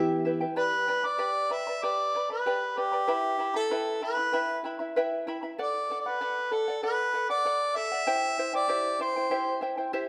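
Andean folk in an earthy, festive mood, this short excerpt from a longer piece moves at a steady 96 BPM in a straight 4/4. A mellow harmonica carries the melody from the very start, its classical-style line sitting up front yet sounding distant and roomy, ranging from G4 to E5 and ending at 9.6 seconds. Beneath it, a fingerpicked charango provides the accompaniment, its doubled strings giving a shimmering, acoustic sparkle with some octave-doubled courses, also placed up front and running to 10.1 seconds. The harmony moves from Em to G, back to Em, then through D to C. Close, detailed microphones capture the pair within a moderate recital-hall reverb of about 1.7 seconds, lending the small ensemble an intimate yet spacious sound.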